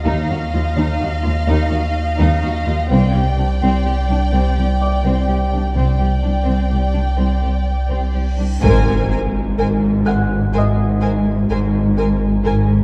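Ominous and tense, this slow 63 BPM suspense film-score excerpt in 3/4 sets a deep, punchy sub-bass drone and bowed double bass and cello sections beneath a close violin melody with vibrato, a distant second violin line and a soft felt-muted upright piano texture, moving from Ebsus2 to Csus2 before a huge, dark reverse cymbal and impact at 8.6 seconds bring in a focused viola section over Abadd9, all bathed in a dark concert-hall reverb.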